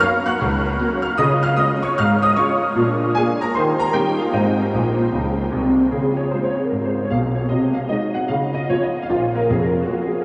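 A solo concert grand piano opens at once in a playful, exuberant stride jazz passage in Db major, swinging at 152 BPM in 4/4. The piano spans from a deep bass down to F1 up to Gb6, sitting polished and up front, with an ensemble chorus and tape echo adding a shimmer to its tone. A huge ambient reverb, ringing for about 7.7 seconds, soaks the mix in a dreamy wash that contrasts with the crisp, lively swing. The harmony moves from Gb through Db and dominant sevenths on Bb and Eb before settling on Ab, where a piano fill from 4.7 to 5.9 seconds leads into a new section. That second section returns to Db, passes through Ab7 over C, and touches Bb minor before the clip, cut from a longer piece, ends at 10.2 seconds.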